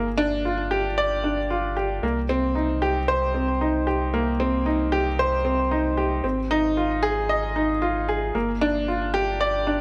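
A straight 4/4 pulse at 114 BPM carries this melancholic, moving piano and strings electronica fragment in C minor: an intimate, up-front baby grand piano, with audible action noise and short sustain, plays a delayed riff over a deep, round sine sub bass as the harmony moves from G7(no3) to Cm7 and Ab5 before returning to G7(no3), with the sound set in a moderate recital hall reverb and a faint mains hum.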